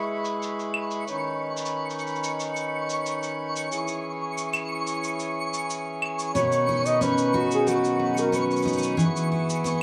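Folktronica at 91 BPM in B major, delicate and playful, built on a reedy, breathing pedal harmonium holding close, up-front sustained chords, while a twinkling granular texture adds an octave-up shimmer high above and muffled, lo-fi cabasa and claves join from 0.2 seconds. At 6.3 seconds a bright, full-bodied picked steel-string acoustic guitar enters with delayed arpeggios, and a moment later, at 6.4 seconds, a mellow flugelhorn with light vibrato and a soft attack sings a short jazz-style melody through gritty 12-bit sampler colour and digital delay, ending at 8.8 seconds. The chords move from E through Badd9 and C#m within a moderate echo chamber reverb.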